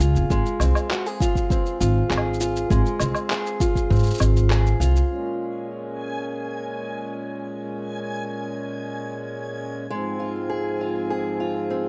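Wistful and intimate, this short folktronica excerpt in Bb minor at 100 BPM opens with boxy, fingerpicked arpeggios on an old ladder-braced acoustic guitar with delay and plate reverb, woody pizzicato upright bass and muffled, pitched-down shaker, woodblock and handclaps, with a deep tape-toned electronic kick entering at 0.3 seconds. The guitar, bass and percussion come together on a band accent at 4.5 seconds before a reedy, breathing pedal harmonium with sampler grit takes over the sustained chords at 5.1 seconds, joined by a dreamy, detuned backwards swelling texture at 6.0 seconds and the returning guitar at 9.9 seconds, in a dark, lightly reverberant production.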